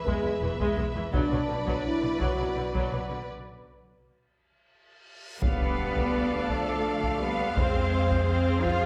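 Epic orchestral film score in a relentless 6/8 at 56 BPM, where two lush, vibrato-rich violin lines, a melody and a second line above it, sing over warm French horn chords, intense violas, focused cellos, expressive double basses with portamento in the background and heavy-stick taiko, until a break at 3.3 s and a drum fill give way to a huge, bright reverse cymbal from 5.1 s and an impact at 5.4 s, where the music turns to D dorian as a very quiet, close studio string section and dark, distant trumpet stabs join, the whole ensemble set in a wet, reverberant hall.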